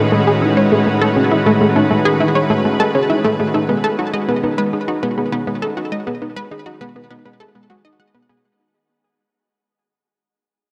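A lush, detuned unison pad holding bright sustained chords opens this mysterious, expansive stretch of sequencer-driven ambient space music alongside a round, up-front analog pluck riff and a warbling, lo-fi pluck arpeggio sitting mellow in the background, both carrying chorus and delay, all bathed in a huge, wet reverb as the harmony shifts from A to Bsus2 at 3.7 seconds and the fragment fades out from 2.1 seconds onward.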